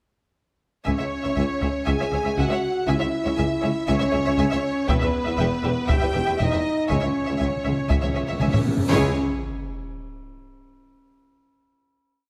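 Dark and epic, this short cinematic orchestral cue opens with rich, lush violas and background chamber violins driving an ostinato, joined at once by a clear, intense violin section carrying the theme, mellow French horns holding sustained chords, bright cellos, a warm double bass section and a very quiet, mellow tuba anchoring the bass, while a heavy taiko ensemble pounds a big drum ostinato, round timpani roll in from 6.9 s, and a huge, bright cymbal swell with a sub drop lands the final chord at 8.9 s in a moderate scoring-stage reverb.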